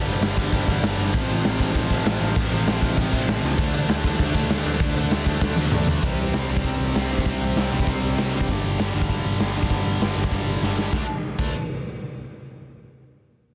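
A tight, bright distorted guitar riff and a round, foam-muted picked electric bass kick off this rowdy, energetic punk rock excerpt at 196 BPM, joined at once by a raw garage drum kit that sits up front with a punchy kick, a medium-tuned snare, crash, hi-hat and toms, sounding gritty and saturated with a rolled-off top in a stone room. From 1.1 to 8.5 seconds a biting overdriven guitar, double-tracked like the first, plays a riff in the background, while the chords move from G5 through F/A, D5 and C5, with drum fills at 5.4 and 10.6 seconds. The mix is dry, dense and heavily limited.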